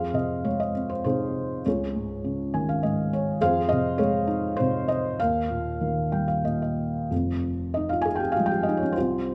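Heard in a moderate recital-hall reverb, this cool, moody excerpt of lyrical classical solo piano features a felt-muted upright, dark and intimate with thick felt and audible action noise, sitting up front in a rubato triple metre, with brief fills at 2.2 and 5.8 seconds before a new section arrives at 7.1 seconds.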